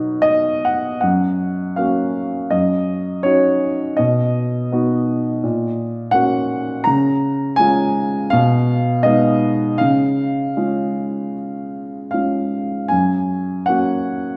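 In a flexible rubato 4/4, this calm, lyrical classical solo piano passage, cut from a longer piece, opens with a brief fill on a warm, natural-sounding baby grand placed up front, moves into its second section at 1.0 s and comes back to its home chord at 12.9 s, the instrument carried by the wet reverb of a recital hall.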